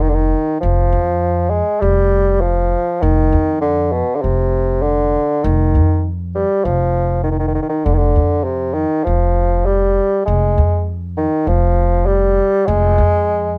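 A mellow bassoon carries the melody up front, played solo in a classical style with a light vibrato, moving between B2 and Ab3 across this short cut from a longer Arabic maqam ensemble piece. Beneath it, an acoustic upright bass sits equally forward, plucked pizzicato on gut strings with a woody, thumpy tone that stays between F1 and F2. Both instruments play together from 0.0 to 13.6 seconds at a moderate 100 BPM in a straight 4/4. The mood is hypnotic and melancholic. A light reverb surrounds the pair, and the production leans dark and warm.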